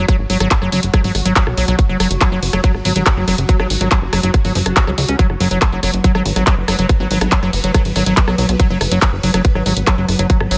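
Psychedelic trance at 141 BPM, psychedelic and driving, built on an F#5 chord throughout this short cut from a longer piece. A tight, up-front electronic kick and a layered kit of handclaps, hi-hat and rim click enter at 0.1 seconds, while a punchy, funky analog bass with tube saturation plucks low notes and a squelchy, resonant acid bass plays a riff colored by chorus, dub echo and sidechain pumping. Behind them, a swarming, tense drone of detuned, granular sustained chords sits in the background with its own reverb and pumping, all in a light reverb.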